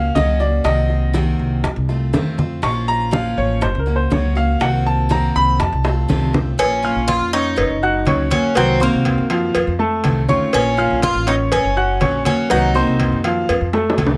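Over a straight 4/4 son and guajira groove, this nostalgic, sultry Latin fragment puts a clear, long-sustaining baby grand piano's arpeggios up front above a woody, thumpy gut-string upright bass, a bright, full-bodied jumbo steel-string guitar's picked accompaniment, round, soft-handed vintage bongos and cowbell, and thin-skinned congas kept dry in the background, before a metallic, double-strung Cuban tres takes the melody at 6.6 seconds, with drum fills closing each section over a repeating Gb, Cm7b5, F7, Bbm progression in light reverb.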